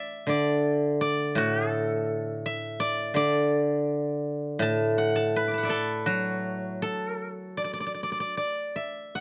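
Chinese traditional music in D gong mode, this serene and elegant passage features a solo steel-string zither played with fingerpicks, its silvery, ringing tone spanning A2 to D6 up front in the mix. The tempo drifts freely around 76-85 BPM in a rubato 4/4, heard over 9.2 seconds cut from a longer piece. The dry, close sound of a 1970s-style studio carries a light reverb.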